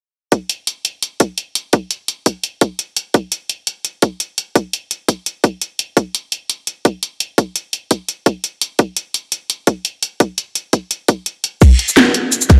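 Dreamy and rolling, this drum and bass excerpt at 170 BPM sets an up-front, layered drum kit with a cracking snare, bright hats, shaker and crash cymbal, re-recorded in a small room, against a tight, overdriven electronic kick, both running from 0.3 to 12.6 seconds in an echo-heavy mix with light reverb and a slight swing on the sixteenths.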